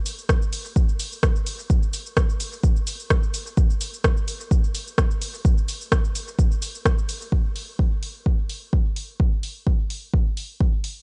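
Nocturnal and hypnotic, this techno excerpt at 128 BPM in 4/4 with a light 16th-note swing pairs a deep, layered, tape-warm electronic kick, re-recorded in a small room and sitting up front, with a punchy, dry, overdriven analog drum machine playing hi-hat, rim click and shaker, all captured in a gritty hardware sound with transformer saturation, cassette tape character and a dulled top end, moving into a second section at 7.3 seconds.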